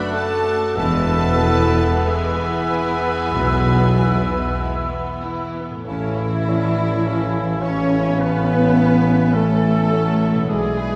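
A slow, rubato romantic orchestral movement in A major at 46-53 BPM, warm and lyrical, where a smooth studio violin section carries the melody over second lines from airy flutes, a clear clarinet, a mellow oboe and a second violin section, with bassoon and a very quiet viola section in accompaniment, distant French horn chords, ringing harp arpeggios and trumpet stabs that stop at 5.5 seconds, while cellos, double basses and tuba enter at 0.8 seconds to anchor the bass, all heard from further back in a reverberant concert hall in this fragment of a longer piece.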